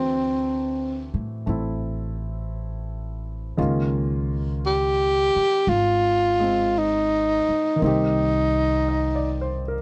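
Swung eighth notes in a slow 4/4 carry this tender, romantic jazz ballad, cut from a longer piece and moving through D9, Db6 and Cm7 chords. Up front, a dark, whispered tenor saxophone sings the melody with a breathy subtone, soft attack and light vibrato, while a clear grand piano accompanies, its action noise audible. A woody, growly upright bass played pizzicato thumps beneath them, all captured by close, detailed microphones in an intimate, dry room.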